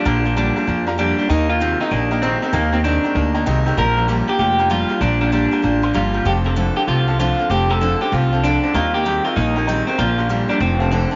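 Retro and upbeat, this short rockabilly cut swings along as a twangy, slightly broken-up electric guitar carries the melody up front with a touch of chorus and tape echo, while a second lo-fi electric guitar works a low riff, a fresh-stringed dreadnought acoustic picks along with audible finger squeak, a thumpy gut-string upright bass sits forward in the mix, and a mellow, dark upright piano lingers in the background of a small, lightly reverberant room.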